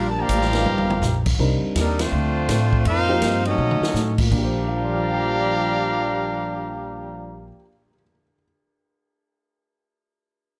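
Big band swing jazz in Bb major at a brisk 164 BPM, this short, brassy excerpt from a longer piece swings in 4/4. A clear, up-front trumpet section carries the melody with jazz vibrato, while a mellow trombone section with a soft attack plays a tight second line beneath it. An upright bass played pizzicato gives a woody, thumpy foundation, and a dark, vintage-toned upright piano accompanies from the background, ringing on alone until 8.4 seconds after the horns and bass stop at 7.5. The acoustic drum kit, with its punchy kick and medium-tuned snare, plays only from 0.3 to 4.4 seconds, adding fills and backing a band accent at 1.9 seconds. The harmony moves through chords such as G7alt, Cm9 and F9sus4 before returning to Bb6, all captured with close, detailed microphones and light reverb.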